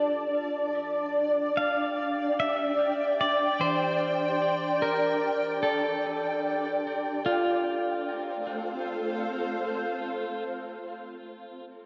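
A blurred, detuned granular cloud pad holds sustained chords up front under a filter sweep while dark, muted felt-like synth keys with chorus, phaser and delay fade out in the background, and at 1.6 seconds a bright, twangy pedal steel guitar with slide and volume swells carries the melody through delay, all in a peaceful, luminous ambient excerpt at 74 BPM in F major, moving from Dmadd9 to F at 7.3 seconds and soaked in a lush hall reverb.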